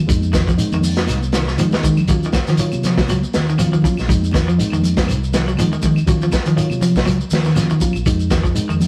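A lightly swung sixteenth-note groove in 4/4 drives this short afrobeat cut from a longer piece, its driving, defiant mood anchored by a crunchy breakbeat kit that sits up front with a tight kick, medium-tuned snare and hi-hat, saturated and gritty yet dark with a rolled-off top, and a brief drum fill at 1.7 seconds. A fingered electric bass, round and amped, holds the low end beside the kit, while a clean, direct reed electric piano supplies reedy accompaniment over chords that alternate between Fm7 and Ebm9. An electric guitar at the edge of break-up plays twangy, picked arpeggios in a narrow range, its tone slightly broken-up. Hand percussion fills in around the groove: a grainy, mellow shekere heard close and dry, bright, high-tuned congas with a thin skin kept very quiet, and woody claves tucked in the background. The whole take carries the rough character of a rehearsal-room recording, set in a moderate stone room reverb.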